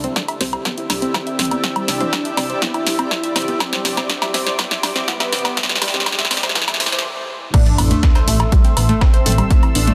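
Melodic techno at 122 BPM, dramatic and melancholic, this cut builds over C with filter sweeps on a thick, detuned unison lead, a round analog pluck arpeggio and a warbling, resonant vintage pad, all pumping to the sidechain, with dub echo on the lead and pluck and an ethereal, airy pad drifting in the background. A punchy, up-front electronic kick and analog drum machine fill drive the build with crash, hi-hat, snare, toms and woodblock, while a rumbling, beating detuned saw bass, a muted filtered dub chord stab with phaser, and a very quiet riser and sub drop fill out the low end and edges. After a brief break, the drop lands on A minor at 7.5 seconds with an impact, and a gritty, compressed sampler-style drum kit with hi-hat, ride and snare joins in the background, all under a dense, heavily limited modern master with light digital ambience.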